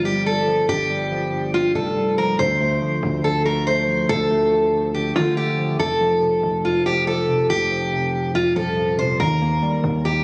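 Melancholic and brooding, this fragment of a longer trap and hip hop piece moves in a half-time feel. A fingerpicked steel-string acoustic guitar carries the melody up front, its jumbo body sounding bright and full, with audible finger squeaks and a low-pass filter taking the edge off its top end. Beneath it, soft electric-piano-like synth keys supply round, mellow accompaniment with a wave-folded, chorused tone, fast-attack decaying notes and a filter sweep. A distorted 808-style bass adds an aggressive, heavy low end, its sine core roughened by a noise layer. The harmony moves from a G7 chord lacking its third into Dm7 at 2.4 seconds, then through F and Eb, and the whole thing sounds captured on a phone in a small room with light ambience and club reverb.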